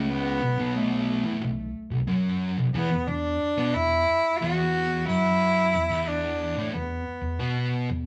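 A bowed cello and a double-tracked fuzz guitar open together on a hypnotic, brooding metal passage at 90 BPM in 4/4. The thick, picked guitar riff sits low and up front, moving from B5 to E5 at 2.7 s, while the single cello carries a rich, smooth melody with vibrato. A moderate studio reverb wraps the band playing live in one room, and this fragment of a longer piece ends with the cello stopping at 7.7 s, just before the guitar at 8.1 s.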